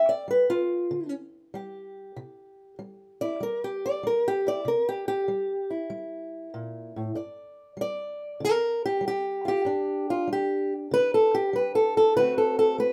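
Recorded up front in a moderately reverberant studio, a single fingerpicked, ladder-braced acoustic guitar sounds dark and boxy, its old strings giving a gritty, woody edge. This laid-back acoustic country blues fragment, cut from a longer piece, moves at 96 BPM in 4/4 with a loping swing on the eighth notes, the guitar spanning G2 to D5 and tuned slightly under standard pitch. Over roughly 13 seconds it moves from G7(no3) to C7 at 2.2 seconds, settles on G5 at 7.2 seconds and turns to D7 at 12.2 seconds.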